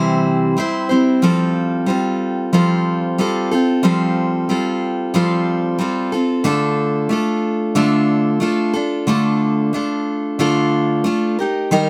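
A carefree, easy-going pop excerpt for solo picked steel-string acoustic guitar, its full-bodied dreadnought tone sitting up front with light reverb around it. The playing rides a gentle sixteenth-note swing in 4/4, moving through C, Fadd9, Dm and Eb, with a brief opening before the main passage settles in at 1.2 seconds.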